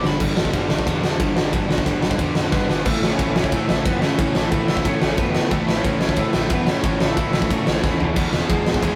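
Punk rock at a brisk 181 BPM in straight 4/4, this short cut from a longer piece feels upbeat and rebellious, rooted in A major. A distorted electric guitar drives the riff throughout, its bright, double-tracked, compressed tone sitting up front. The big acoustic rock drum kit is also up front, with a fat snare, punchy kick, crash and ride cymbals and toms ringing in a stone-room ambience, and fills land at 2.5 and 7.8 seconds. Underneath, an overdriven picked electric bass holds the low end very quietly, its dark, round, foam-muted sound coming through direct. A lightly driven lead guitar, twangy and slightly broken-up, carries the melody from 2.5 seconds as the harmony moves from G to A. The rough rehearsal-room recording has light reverb and warm saturation.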